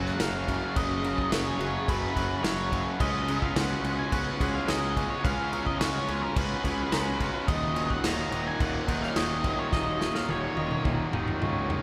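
Drenched in a wet cathedral reverb that hangs for seconds, this post-rock excerpt sounds as if played in a church or concert hall, cinematic and brooding in Eb minor at 107 BPM in a straight 4/4. A dark, fuzz-laden octave lead guitar carries the melody up high until it drops out at 10.8 seconds, while two bright, overdriven electric guitars churn out a picked riff in the background beneath it. A growly, fuzzed fingered bass anchors the low end, and a loose indie drum kit sits up front with a tight kick, medium-tuned snare, toms, crash cymbal and a rolled-off top, rolling into a fill from 9.7 seconds. Two very quiet, twangy clean guitars weave arpeggios, one compressed and picked, the other fingered and mellow, and a swirling, warbling vintage sawtooth pad with phaser and chorus swells in slowly underneath. The harmony moves from Gbsus2 to Db7sus4 and settles on Ebm7.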